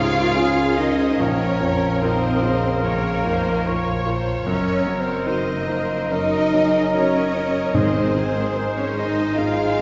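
Classical romantic writing for piano and orchestra, this lyrical, passionate passage moves at 74 BPM in 4/4 with a flexible rubato feel, cut from a longer piece. An open-toned baby grand piano carries the melody from the bass register up to Bb4, joined by a very quiet, lush violin section with expressive vibrato, over harmony that moves from Db through Bbm and Ebm/Gb to Ab. A smooth, even second violin section, a pure, hollow flute, a distant clarinet and a vibrato-rich oboe weave a second line above, while a dark, very quiet bassoon and a focused viola section fill in the accompaniment. Soft-attack French horns hold mellow sustained chords in the background, and a cello section and a rich double bass section supply the bass. Timpani struck with hard mallets enter on Ab at 7.7 s, crisp and articulate, just as the harmony reaches Ab. The whole ensemble sits in a generous scoring-stage reverb, heard from further back in the room with a soft, rolled-off top end.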